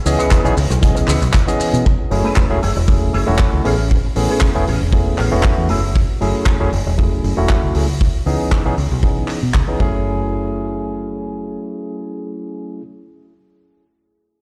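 Nu-disco at 117 BPM in F# dorian, sleek and cosmic, cut from a longer piece that opens on a drop. It pairs a twangy, compressed envelope-filtered guitar riff with chorus and tape echo, tucked in the background until 5.9 seconds, against an up-front, barky tine electric piano with its own tape echo, a foam-muted fingered bass, and a roomy, distant drum kit of handclaps, hi-hat and shaker under a punchy, forward kick. The harmony moves between C#m7 and F#m9, and the whole sounds as if played on a big sound system in a bare room, with large studio reverb, as the electric piano outlasts the bass and carries on to 12.8 seconds.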